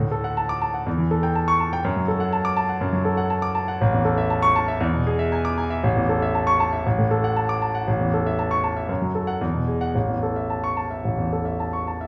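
A clear, up-front concert grand piano with deep bass, a polished tone and short sustain carries this stormy, agitated classical virtuoso study alone at 118 BPM in 4/4 with uneven, rubato beats, settling into A major from 3.8 s as it ranges from A1 to D6 under light reverb and studio ambience in a brief cut from a longer piece.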